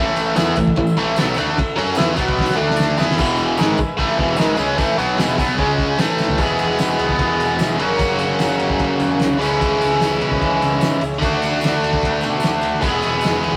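A biting, overdriven guitar riff, double-tracked and up front, opens this rowdy, swaggering garage rock at 149 BPM alongside reedy, lightly vibrato-tinged combo organ chords and a punchy fuzz bass tucked in the background, with a cloth-damped drum kit of muffled, dark cymbals and a fat snare joining at 0.2 s and a jingly tambourine sitting close and dry beneath. Drum fills around 2.4 s and 6.2 s mark the shifts between sections, and from 6.4 s the harmony turns lydian over E, with chords moving through F#, C#m and D, while the organ adds a brief fill from 9.0 s. The rough rehearsal-room sound carries a moderate stone-room reverb, and this short section is cut from a longer piece.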